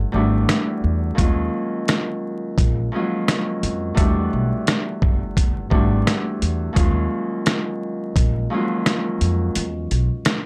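Reflective and gritty, this short boom-bap hip-hop cut moves at 86 BPM in 4/4 with a swung 16th-note feel. A fingerpicked Celtic harp carries the accompaniment up front, its ringing tone filtered and given a cassette-tape color as it moves between Em11 and Ebm11 chords. Beneath it, a pizzicato upright bass adds a woody, thumpy low end on steel strings. A trip hop sampler-style drum kit enters at 0.5 seconds, compressed and pitched down, with a thumpy kick, a medium-tuned snare and hi-hat that sound re-recorded in a small room. The opening break runs to 1.2 seconds, and the kick drops out from 9.6 seconds as the harmony settles on an E5 chord. The whole recording is dry and hardware-rough, with vinyl crackle under it, and it is cut from a longer piece.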